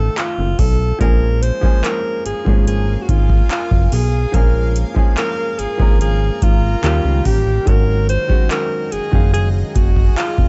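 A breathy, close-miked alto saxophone with tape echo and vibrato carries a sensual, longing melody over a clear, intimate grand piano and a fat, up-front analog bass, joined at 0.2 seconds by an overdriven, booming analog drum machine of deep kick, metallic hi-hat and handclaps, and at 2.6 seconds by a cloudy, evolving granular pad in the background, in this slow 72 BPM contemporary R&B excerpt in Bb minor that moves through F7, Bbm7, Eb7 and Ab7sus4 with dark, dry production.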